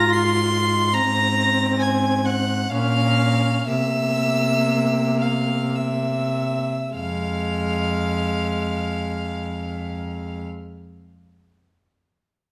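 Melancholic and yearning, this excerpt from a slow romantic movement for string quartet unfolds in F minor and 3/4 time at 49-71 BPM, with a rubato feel that slows down through its first 6.9 seconds. A rich, intimate first violin carries the melody high above the group, its bowed tone airy and touched with light vibrato, while a second violin adds a pure, floating line an octave below. The dark viola fills in the accompaniment with a smooth top, and the clear, slightly nasal cello anchors the bass up front. All four players bow sul tasto with soft attacks, keeping the blend soft-edged and close. The harmony moves from F minor through Ab, Bb minor and C7 before returning to F minor at 6.9 seconds as a second section begins, all set in the wet bloom of a recital hall.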